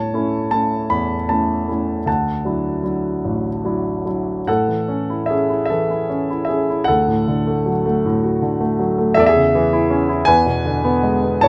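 Classical solo piano in a tender, calm mood, this short excerpt unfolds in 6/8 with a gently flexible rubato. A warm grand piano, up front and captured with close, detailed clarity in light reverb, plays alone throughout and spans from deep bass to high treble. Around 4.5 s the harmony settles into a new tonal centre, and the passage closes on a hanging E7 chord at 10.3 s.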